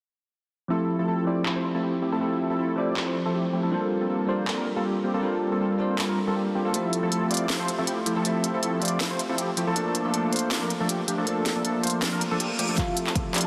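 A fat, nasal, detuned sawtooth polysynth carries the riff in this bright, playful future bass excerpt, its chorused tone pumping against the sidechain and trailing delay over a half-time, lightly swung feel. A bell-like, clean tine electric piano comps through Fmaj7, Gm11 and Bbmaj7 beneath a filter sweep, and a trap kit of sharp snare, crisp hats and handclaps joins at 1.5 seconds with a tape-tinged edge, all bathed in a huge ambient reverb and a dense, heavily limited master. A reverse cymbal and riser build from 12.2 seconds into a drum fill at 12.8 seconds, where a punchy, overdriven kick lands and a round, dark octave-layered synth lead enters with phaser, vibrato and digital delay.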